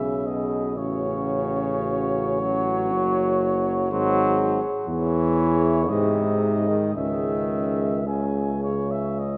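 Solemn and elegiac, this brief excerpt from a longer classical piece is a hymn-like passage for brass band, moving slowly in 3/4 at 52-62 BPM with a rubato feel in C# minor. A flugelhorn carries the melody with light vibrato, a soft attack and a smooth top, while a French horn section sits in the background with a warm second line. A bright, vintage-toned trombone stands up front in the accompaniment, joined by a euphonium with a gentle attack placed further back. Underneath, the tuba supplies the bass with light vibrato, its sound distant and roomy even as it sits forward in the blend. All five parts play together from 0.0 to 9.4 seconds through a harmony that moves from C#m to G# and settles back on C#m, bathed in a wet church reverb.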